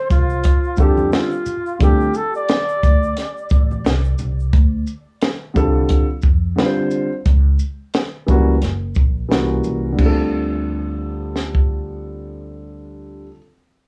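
A breathy, mellow flugelhorn carries the melody up front with vibrato, scooped notes and tape echo, then falls silent at 3.7 seconds in this cool, nocturnal jazz-hop piece cut from a longer work. A dark, smooth grand piano and a woody pizzicato upright bass carry on as a dry cocktail drum kit, with its punchy kick, high-tuned snare and dusky cymbals, swings up front alongside them. Soft-handed congas and egg shaker ring in the background until 4.5 seconds, and the whole recording wears a worn cassette warble with drifting pitch, light reverb and small-room ambience.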